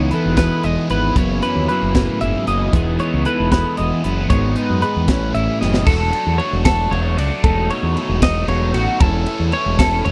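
Set in a lilting 6/8 with a straight feel, this brief, playful excerpt from a longer math rock and midwest emo piece moves at an unhurried pace and carries a bright, sunny mood. Two clean, compressed twelve-string electric guitars open together: one supplies low-to-mid chordal accompaniment with a warm tone and analog chorus, while the other picks twangy, bright arpeggios up high. A cranked stack guitar, double-tracked and overdriven with a phaser, plays a riff in the middle register, and a growling fingered bass sits up front with a round, overdriven tone. A crisp fusion drum kit, airy and polished with a high-tuned snare and punchy kick, drives things with crash, hi-hat, ride and snare, and throws in a fill at 5.6 seconds. The accompanying twelve-string drops out at 5.9 seconds as the harmony shifts from jazzy chords like Emaj7 and G#m7 to colours held over a low E, such as Dmaj7/E and B9/E. 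The dry, close studio sound has a 1970s character, with little reverb.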